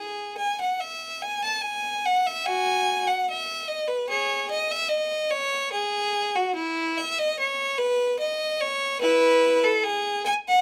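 Classical baroque-style suite movement for unaccompanied violin, flowing and radiant at 73 BPM in 4/4 with a rubato feel, settling into E major from 5.7 s. Throughout, a single bright, intense bowed violin with vibrato sits up front in light reverb across the E4 to A5 range for this brief excerpt cut from a longer piece.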